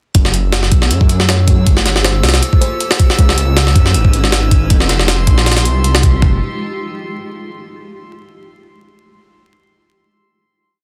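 A dense, heavily limited digital mix with vinyl crackle frames this dark, atmospheric drum and bass and jungle piece at 158 BPM, built on an up-front, gritty, pitched-up and heavily chopped breakbeat with a thumpy kick and high-tuned snare, beneath a thick, menacing detuned saw bass that holds long gliding notes. A cloudy, evolving granular pad sustains minor-ninth chords in the background while a glassy, drifting high texture hovers above with chorus and reverb. A woody, hollow kalimba with dub echo offers short phrases between 1.3 and 3.1 seconds, and the drop settles onto a final chord at 6.2 seconds.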